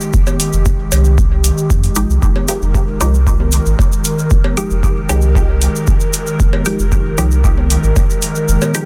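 Dub techno with a cavernous, hypnotic mood, heard as a short cut from a longer piece over a steady straight 4/4 pulse resting on an Fm9 chord. An airy, breathy pad holds sustained chords throughout, its chorused tone breathing with sidechain pumping, while a round sine sub bass with tube saturation anchors the low end and pumps in the same way. The deep, tape-warm electronic kick sits up front beside metallic analog hi-hats, both carrying a small-room re-recorded character, and the kick drops out at 8.5 seconds. Grainy acoustic cabasa sits close and dry, joined by layered, overdriven cowbell and congas sent into dub echo. From 2.0 seconds a filtered, detuned chord stab with a resonant pluck and phaser adds bright, echoing accents. The digital ambience and dense, heavily limited master keep the mix thick and dense.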